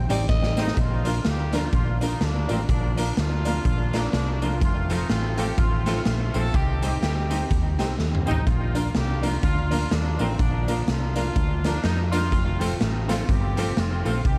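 A gritty, saturated garage drum kit sits up front with punchy kick and fills at 0.3 and 8.0 seconds in this cheerful, swinging ska excerpt, joined by a round, dark hollow-body bass, a brief raspy alto saxophone with scooped notes and analog delay, a clear, distant horn section carrying the melody from 0.6 seconds, brilliant, slightly detuned upright piano stabs, a very quiet clean picked electric guitar and a jingly tambourine, all over vinyl crackle, light reverb and small-room ambience.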